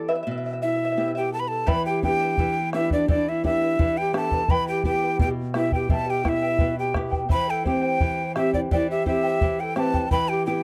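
A straight 2/4 pulse at 85 BPM carries this earthy, wistful Andean folk piece in E minor, cut from a longer performance. Fingerpicked charango, shimmering with its double strings in the background, and a small nylon-string guitar open over Em; at 0.6 s a breathy, reedy quena takes the melody up front with vibrato while a mellow, hollow pan flute plays a soft-edged second line from a distance. The round bombo arrives at 1.7 s as the harmony moves through G/E and C/E, all captured in a dry, close 1970s-style studio sound.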